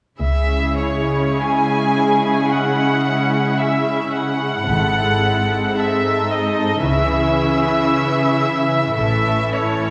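Up front and close, a muted chamber violin section sings a veiled, yearning melody with light vibrato and soft attack in this slow, elegiac romantic movement for string orchestra, shaped in free rubato and heard from further back in a reverberant recital hall, as a smooth-topped, dark second violin line and distant, muted violas, cellos and double basses fill out the harmony beneath it throughout this fragment of a longer piece.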